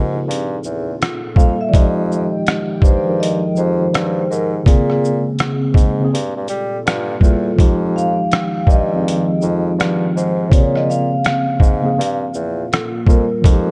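This nostalgic, hazy lo-fi hip hop excerpt in F minor opens with a clean tine electric piano colored by cassette tape and a low-pass filter, a deep, detuned analog pad with chorus and phaser sitting in the background, and a clear, classical-style bassoon carrying the bass line with light vibrato and a soft attack. At 0.3 seconds a compressed, pitched-down, sampler-style trip hop kit arrives up front with a gritty, thumpy kick, hi-hat, rim click and shaker, swung on the 16ths at 82 BPM. From 1.4 seconds a metallic, ringing vibraphone played with soft mallets takes the mid-forward melody with slow motor vibrato and analog delay, over moody Gm9, Fm9 and Bbm9 chords that settle on Gm7 in a dark, dry mix.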